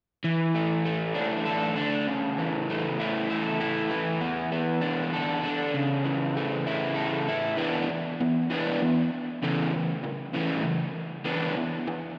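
Rock in 6/8 at 65 BPM, carefree yet wistful, this short passage features a lone crunchy electric guitar, picked and double-tracked, sitting up front from 0.2 to 12.1 seconds with a diffuse ambient delay trailing its notes. The harmony rocks between E7sus4 and A/C# before settling into E5 and A/C# at 7.6 seconds, all slightly below standard pitch at A4 = 438 Hz. A long, lush hall reverb soaks the mix in a dreamy haze.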